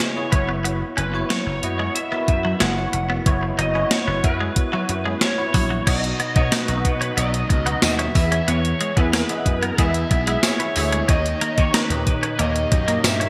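1980s-style pop with a dramatic, urgent mood, this excerpt moves at 92 BPM in a straight 4/4. A clean 12-bit drum machine sits up front with a thumpy kick, medium-tuned snare, hi-hat, tambourine and crash, all bathed in gated reverb. Its sampler-style sound carries a tape-warm character from being re-recorded in a small room. A dark, lo-fi lead guitar through a small cranked amp carries the overdriven melody with lush chorus and digital delay. Beneath it, a bell-like tine electric piano with ensemble chorus and a twangy, compressed twelve-string electric guitar riff fill out the texture. A growly, punchy slap bass enters at 0.3 seconds over an F#7sus4, and a very quiet, double-tracked crunchy guitar joins at 5.9 seconds as the harmony shifts through B, E and D#7, all set in a lush hall reverb with bright digital production.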